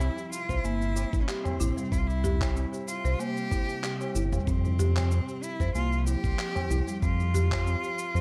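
A digital, echo-heavy ambience frames this meditative, earthy organic downtempo excerpt in C major at 94 BPM with a light 16th-note swing, where a clear, close bowed cello with vibrato carries the melody through tape echo over woody, dry marimba arpeggios, a deep, dark analog bass up front and an ethereal, airy pad in the background with chorus, phaser and sidechain pumping, while a gritty sampler-style kit of cabasa, handclaps and toms, a thumpy electronic kick entering at 0.5 seconds and a low-tuned, vintage-sounding tabla from 1.0 seconds play as the harmony moves from C7 to Fsus2 at 4.5 seconds.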